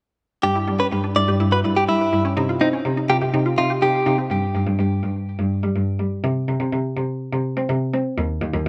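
This nostalgic yet upbeat synth-pop excerpt opens at 0.4 seconds with three parts together at 124 BPM in a straight 4/4, moving from a G5 chord to C minor. A single bowed cello carries the bass line, its focused, bright tone coloured by vibrato and sitting up front despite a distant quality. Above it, a clean, picked electric guitar recorded direct plays a compressed second line, dressed in spring reverb and delay. A squelchy, resonant filter pluck built from detuned square and sawtooth waves adds arpeggios with a fast attack and short decay, thickened by chorus and delay. The guitar drops out at 4.2 seconds and the pluck at 4.3 seconds, leaving the cello alone until 8.7 seconds, all set in a lush hall reverb.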